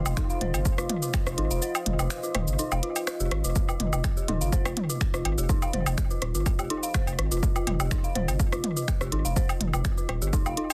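Minimal techno at 124 BPM with a light 16th-note swing, cool and clinical in mood, cut from a longer piece. A punchy, up-front analog kick drops out between 1.6 and 3.6 seconds, while a thick, saturated sine sub bass, a clicky kit of finger snaps, hi-hat and shaker, and a layered percussion kit of cowbell, rim click, toms and woodblock with tape echo keep the groove going. An eerie, inharmonic FM bell riff and a deep, moody sawtooth pad with a slow attack and long release both pump with the sidechain under chorus, all held in a dense, heavily limited master with light reverb.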